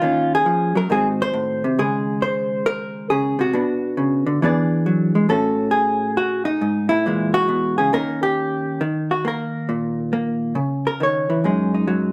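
Late-night and smoky, this brief solo jazz excerpt swings in 4/4 as a lone vintage hollow-body electric guitar, dark, clean and compressed, sits up front in a moderate studio room, moving through rich extended chords before stepping into a soloing passage from 8.8 seconds.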